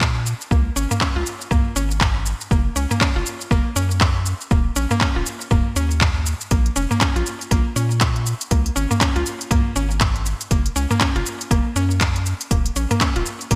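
Afro house at 120 BPM with a 16th-note swing, this hypnotic, earthy clip rides on an overdriven electronic kick with small room ambience, an up-front afro-pop kit of smooth hi-hat, shaker, handclaps and toms set in gated reverb, and a round, dark analog bass pumping against the sidechain from Eb1 to Bb2. At 0.5 seconds a woody, mallet-like FM pluck enters with chorused, delayed arpeggios between Bb3 and F4, cycling through Db5, Gb, Eb5 and Bbm changes. The bright 1980s-style digital production adds light reverb and a digital ambience.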